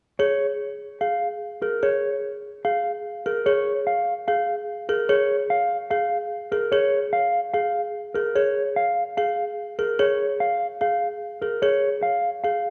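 A mellow, clean electric guitar carries a dark, fingered melody between Bb4 and F5 up front, while a woody folk marimba struck with hard mallets plays percussive Ab4 arpeggios over a single rootless Bb7 harmony in Bb minor, giving this hypnotic, meditative minimalist pattern piece at 147 BPM in 4/4 a rustic edge within the lingering wet reverb of a recital hall, from 0.2 to 12.7 seconds of a longer work.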